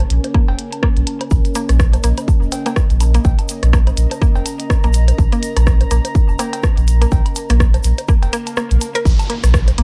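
A punchy, layered electronic kick sits up front alongside a deep, thick saturated sub bass with a fast attack that pumps under the sidechain through this clinical, quirky minimal techno cut in Bb minor at 124 BPM, swung on the 16ths. Clicky hats and rim clicks from a minimal drum kit share the groove with bongos, woodblock and cowbell carrying a tape-softened analog tone, while a grainy acoustic egg shaker joins in the background at 1.3 seconds. A woody, round mallet-like synth pluck with an FM bite and a noise layer runs a short-decay riff through chorus, phaser and analog delay. Beneath it, a moody sawtooth pad with a sub octave and a detuned, tempo-synced gated texture breathe with slow attacks and long releases, washed in chorus and built-in reverb and ducking under the sidechain. The harmony rests on Bbm7 until a swell arrives at 8.2 seconds, the kick drops out briefly, and a downlifter carries the fragment onto a bare Bb5 at 9.1 seconds, all heard through a dry, gritty cassette-tape sheen.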